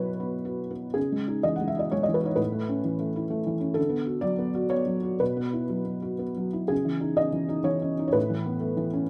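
Neoclassical minimalist piano in C# minor, this brief, reflective and wistful fragment, cut from a longer piece, moves in a rubato 3/4 somewhere between 113 and 131 BPM. A felt-muted upright piano plays solo from 0.0 to 9.1 seconds, spanning A2 to F#5, its tone soft, mellow and dark behind thick felt, with short sustain and audible action noise that keeps it intimate and natural. The instrument sits up front in a rough home demo mix, surrounded by studio ambience. The harmony circles through Bsus4, C#madd9, Aadd9 and D6, then returns to Bsus4 at 5.2 seconds and repeats the opening turn. Those suspended and added-tone chords, paired with the pliant timing, give the passage a gentle, unresolved quality.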